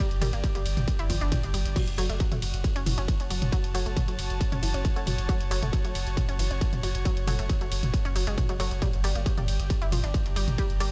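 A distorted, layered electronic kick drives this dark, relentless peak-time techno passage, cut from a longer piece, with a techno drum kit of hi-hats, crash, ride and toms ringing as if re-recorded in a large room. Underneath, a thick, saturated sub bass pumps against the kick, while a nasal, wave-folded analog pluck carries the riff through overdrive and analog delay. An airy, breathy pad and a muted, phased dub chord stab with cassette-tape grit and dub echo sit further back, giving the echo-heavy digital ambience its haze.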